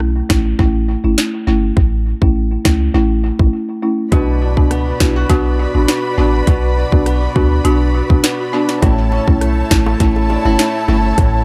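This bouncy, hypnotic dancehall groove moves at 102 BPM in a straight 4/4, with an electronic island pop drum kit up front: a tight kick, sharp snare, rim clicks and metallic hi-hats, all carrying an analog delay. A clean, boomy 808-style bass with a sine tone and fast attack sits low beneath it in B minor, while a folk marimba played with medium mallets supplies a woody, rustic accompaniment, its hardwood bars heard dry in a boxy small room and trailed by analog delay. After a short break from 3.5 to 4.1 seconds, the harmony moves from A to Bm, and a lush, bowed string section enters with sustained, vibrato-rich chords that pump against a sidechain, alongside a dark, fingerpicked nylon-string guitar playing arpeggios. At 8.8 seconds the chord returns to A and very quiet, high-tuned bongos join, struck with soft hands in a live room. The echo-heavy mix carries light reverb, and the recording is cut from a longer piece.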